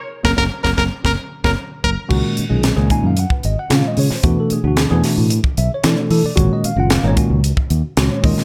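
A slick, bright electric jazz fusion excerpt at 113 BPM opens on a full-band accent, with a clear, forceful trumpet playing a short solo phrase on Bb4 with light vibrato, slapback echo and plate reverb until 1.9 seconds, while a drum fill runs from 1.0 second. Tine electric piano through a combo amp, treated with phaser and plate reverb, carries the accompaniment up front over punchy fingered bass and a crisp, polished kit with dark cymbals, a high-tuned snare and a tight kick. From 2.1 seconds the harmony moves through Db9sus4, E9sus4 and Ab9sus4 in an airy studio room with light reverb.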